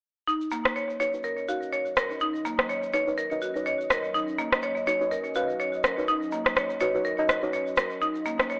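Hypnotic and spiritual, this short afro house cut from a longer piece is led by a bright, woody marimba playing arpeggios up front, which starts at 0.3 s alongside a grainy egg shaker, with an overdriven electronic rim click with studio reverb joining at 0.7 s. A deep, mellow chord stab, dark and detuned with chorus and tape echo, and an ethereal, airy pad with slow attack and ensemble chorus both carry filter sweeps, while the harmony moves from Db9sus4/Eb to Ebm9 at 8.0 s. The whole piece has a dry, gritty, telephone-like sound with light small-room reverb.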